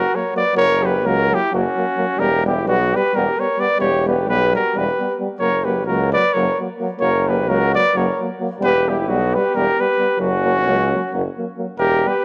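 A dark trumpet carries the melody up front in this bittersweet, virtuosic Balkan folk brass excerpt, moving briskly in 7/8 at 262 BPM (eighths) in F# phrygian dominant. A close-miked flugelhorn with light vibrato plays a second line, a clear, vintage tuba holds the bass, and two euphoniums fill in the accompaniment: one mellow and distant in the background, the other warm, all in a classical style. The harmony alternates between F# and Em, and a moderate echo chamber reverb surrounds the ensemble.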